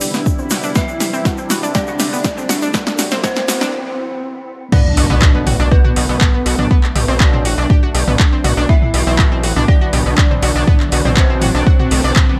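A lightly reverberant mix with a digital sheen opens this melancholic, hypnotic slice of melodic techno, cut from a longer piece. The first few seconds build up as a grainy egg shaker and a dark, cloudy granular pad sit beneath a drum fill, while filter sweeps move across the warbling analog pluck arpeggios, the thick detuned unison lead in the background and an eerie, inharmonic synth bell, all three carrying sidechain pumping and delay. A sweeping resonant pad holds airy chords from Cmaj7 to Dadd9, and a very quiet riser and impact arrives at 1.1 seconds, before a short break. An overdriven, up-front electronic kick drives from 0.3 seconds alongside a deep house kit of punchy snare and metallic hats. The drop lands at 4.7 seconds, and a gritty, aggressive synth bass enters at 5.0 seconds, distorted and pumping. From 6.7 seconds a tense, string-like bowed drone adds a faint layer under the Am7, Cmaj7 and Dadd9 changes.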